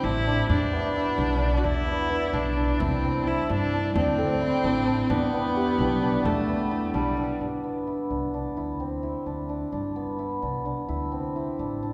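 Heard from further back in a wet concert hall, this playful, shimmering excerpt of contemporary chamber music moves in a straight 5/8 at 260 BPM in G major. A ringing, mellow hammered dulcimer plays arpeggios up front beside a clear, intense bowed viola carrying a second line, while a growly pizzicato upright bass holds the low end, a very quiet woodwind section sustains smooth chords, a deep frame drum adds close, dry percussion, and a delicate, bell-like celesta lends texture in the background from 0.8 to 6.6 seconds. After the drum, viola and woodwinds drop out, the dulcimer and bass carry on alone between G6 and Dsus2 chords until 11.9 seconds.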